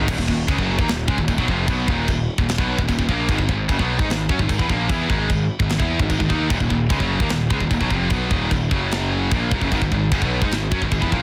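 A scooped, high-gain, double-tracked guitar sits up front picking a dark, relentless riff in Eb minor at 149 BPM, driven by a growly fuzz-overdriven bass and a tight metal kit with bright china and crash cymbals, medium-tuned snare and tight kick, all in a dry, dense, heavily limited modern heavy metal mix cut from a longer piece.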